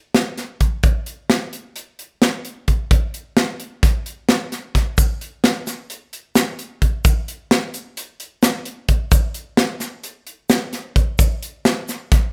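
Lightly reverberant and polished, this intricate, driving progressive instrumental excerpt moves in a straight 9/8 at 261 BPM counted in eighths, with an up-front acoustic drum kit, airy in its small room, laying down hi-hat, a punchy kick and a medium-tuned snare, joined at 5.0 s by a grainy, bright egg shaker sitting in the background.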